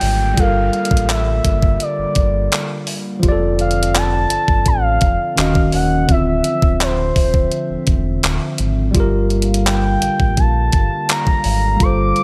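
Sensual and longing, this contemporary R&B excerpt moves at an unhurried, straight pulse in 4/4, its chords drifting from Gm9 through F6, Ebm9 and Dm9 before settling back on Gm9 at 8.9 seconds. Up front, a gliding portamento lead built from smooth triangle and sine tones sings the melody high in its range, shimmering with chorus and vibrato as it slides between notes. A clean tine electric piano carries the accompaniment beneath it, while a hollow, flute-like pad with a slow attack and long release hangs mellow in the background, thickened by its own chorus. A deep, full sine sub bass doubled at the octave anchors the low end, and a crisp 8-bit drum machine with a thumpy kick, hi-hat and handclaps sits forward with a tape-warm, sampler-style character and the air of a large room. A faint electronic downlifter drifts behind everything for the first 3.2 seconds, and the whole mix is bathed in digital ambience.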